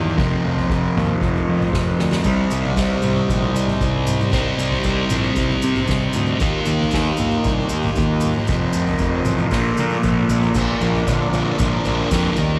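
A double-tracked fuzz guitar riff, distorted and colored by phaser, leads this dark, hypnotic psychedelic rock excerpt at 116 BPM, over a round, overdriven bass in the background, reedy sustained harmonium chords, a soft-mallet drum kit with a boomy kick and dark cymbals that plays fills at 2.0 and 9.5 seconds, and grainy, distant maracas entering at 2.2 seconds, as the chords move from F7sus4 through Cm and Ebadd9 to settle on Bb at 10.6 seconds.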